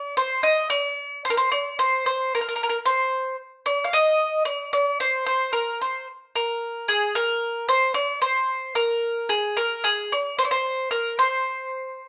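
Arabic maqam music performed in an ensemble setting, this short excerpt cut from a longer piece carries a hypnotic, melancholic mood in a steady, straight 4/4. A bowl-back mandolin takes the solo role from 0.0 to 12.1 seconds, its bright, picked tone ringing through doubled strings. The instrument sits up front in the mix, staying within a range from Ab4 to F5. The band was captured playing live in one room, and a moderate large-studio reverb gives the mandolin's notes a roomy tail. The whole passage forms a single section, holding its brooding, trance-like character throughout.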